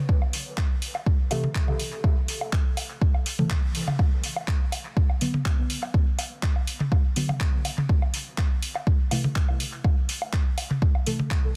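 A dense, heavily limited and nearly dry mix carries this deep, hazy dub techno excerpt at 123 BPM in B phrygian, where an overdriven, up-front deep kick anchors tape-toned electronic woodblock and toms that pump with sidechain and trail dub echo, an overdriven deep house kit adds handclaps and hi-hat with echo of its own, and from 1.3 s a soft, dark, wave-folded chord stab with fast attack and decaying tail, colored by chorus, phaser, pumping and dub echo, moves from Am to Bm and back to Am, with a band accent at 3.5 s.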